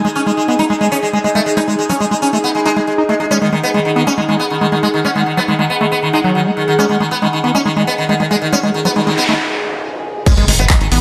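Intense and hypnotic, this psychedelic trance passage, cut from a longer piece, moves at 138 BPM in a straight 4/4. An up-front sitar carries the melody between D#3 and D#4, its buzzing, sympathetic-string shimmer treated with phaser, delay and sidechain pumping. Alongside it, a squelchy, gritty acid bass plays a resonant riff, while an evolving wavetable pad holds chords in the background and an airy, breathy pad adds a warbling, detuned texture, all pulsing with the sidechain. A noise sweep runs from 8.9 seconds into a short break, then an impact lands at 10.3 seconds as a tight kick and an overdriven techno kit of crash, handclaps and filtered hi-hats arrive. A punchy sequencer bass joins at 10.4 seconds, and a moderate digital room reverb gives the mix a compact sense of space.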